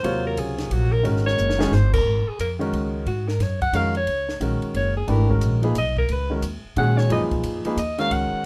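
A lilting 3/4 swing drives this brief modal jazz fragment, cut from a longer piece, with a cool, searching mood. A breathy alto saxophone solos up front across the whole 8.5 seconds, its subtone and scooped notes lending it a vintage, jazz-style character. An upright piano sits close by with an intimate, woody tone, long sustain and audible action noise, voicing suspended chords that move from Ab9sus4 to G#13sus4 and then C#13sus4 at 6.1 seconds. Underneath, a dark, pizzicato upright bass on steel strings anchors the low end. A compact cocktail drum kit stays dry and in the background, with dark cymbals, a high-tuned snare and a punchy kick, and it plays a short fill at 1.4 seconds. Moderate studio ambience gives the ensemble a natural sense of space.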